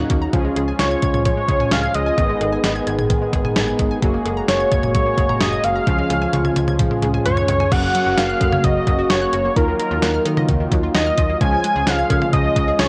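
A straight 4/4 drum machine, sampler-style with a thumpy kick and fat snare up front, drives this bright, nostalgic synth-pop excerpt, with cowbell, hi-hat and crash on top and a fill from 5.9 to 7.7 seconds. A snappy, metallic FM bass and a round, chorused, detuned synth brass join a classical-style French horn section holding sustained chords, while a chorused analog pluck arpeggiates through tape echo in the background. A thick, wave-folded unison lead with vibrato carries the melody up front from 0.8 seconds, all heard through a home cassette recording with a moderate spring reverb.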